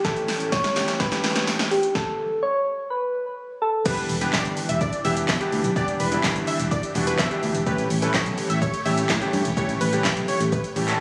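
Straight 4/4 dance-pop with a bittersweet, driving mood opens on a build-up, where a gentle, round FM synth lead carries the melody over brilliant grand piano, a lush, very quiet detuned supersaw pad with phaser, an up-front punchy analog drum machine with kick, snare, hi-hat, handclaps, shaker and crash, and a faint jingly tambourine, until a drum fill, a filter sweep and a brief stop lead into the drop at 3.9 seconds, where a catchy, detuned sawtooth unison lead with digital delay takes over the melody and a round, sidechain-pumped fingered electric bass enters, the whole mix sitting in light reverb with the ambience of a phone recording made in the room.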